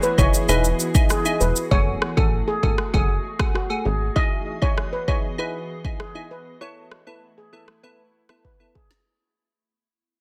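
Dancehall with a sunny, summery mood, moving at 98 BPM in a straight 4/4 and cut from a longer piece, with a fade-out running across its full length and a drum fill closing it from 8.4 seconds. A mellow steel pan carries the melody between F#4 and D#5, its metallic, shimmering tone struck with soft rubber sticks and trailed by digital delay. Beneath it, a glassy FM pad holds ethereal sustained chords with a slow attack, ensemble chorus, built-in reverb and tremolo, moving through Emaj7, F#madd9 and Asus2. An up-front electronic afro-pop kit drives the groove with a deep kick, rim click, shaker and a woody snare given soft clipping. A crisp, detuned wavetable chord stab with sidechain pumping adds full-bodied accompaniment, while a punchy, funky analog bass with a wave-folded tone and a filter pluck plays from 0.2 to 4.1 seconds. The dense, heavily limited modern master sits in a digital ambience.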